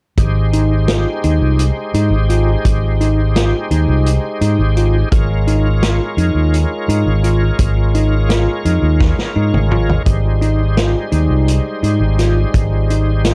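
A growly, up-front fingered electric bass drives this intricate, bright progressive instrumental in 7/8, joined by a punchy vintage drum kit with a rolled-off top, a shouting tonewheel organ with overdrive, chorus vibrato and a slow rotary speaker, and clean, bell-like tine electric piano arpeggios through digital delay from 0.5 s, set in a dark, lightly reverberant production where a drum fill at 9.0 s leads into a new section at 10.1 s of this piece cut from a longer whole.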